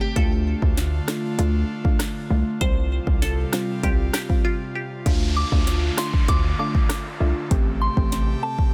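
An up-front afro-pop drum kit with deep kick, metallic hats, rim clicks and a sharp, softly clipped snare drives this hypnotic, sultry dancehall excerpt, anchored by a punchy, heavy 808-style bass. An airy, breathy pad pumps beneath a dark, rounded pluck accompaniment and a glassy, crystalline wavetable pluck with chorus and delay that drops out during a brief break just before 5.1 seconds. From there a downlifter sweeps in and a pure, mellow FM bell takes the melody at 5.4 seconds, shimmering with phaser and delay over a dense, heavily limited mix that stays dry.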